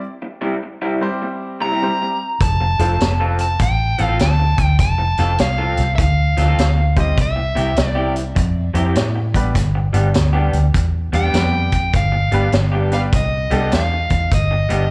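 Heard through a club PA with small-room reverb, this swaggering, laid-back electric blues shuffle at 101 BPM in C major opens with a slightly broken-up, lo-fi guitar riff from a small old amp, carrying vibrato and slapback echo. A bright, woody upright piano with audible action noise comps in two stretches starting at 1 second, and an overdriven lead guitar enters at 1.6 seconds with its own slapback echo. From 2.4 seconds a round, foam-muted vintage bass sits up front alongside a gritty vintage drum kit with a punchy kick, high-tuned snare and hi-hat.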